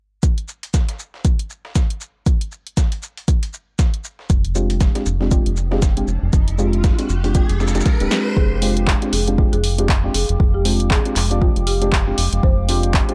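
Smooth and deep, this deep house excerpt at 118 BPM in F dorian rides a swung groove of an up-front layered electronic kick and a punchy, tape-warm analog drum machine with handclaps, alongside a gritty, overdriven sampler-style kit of hi-hat, shaker and snare. A round, dark analog bass with tube saturation arrives around 4.3 seconds, and soft, chorused chord stabs with a filter sweep and delay follow at about 4.5 seconds. An electronic riser builds toward a drum fill, and at 8.4 seconds a woody, dry marimba melody and a hollow, flute-like pad drift in the background.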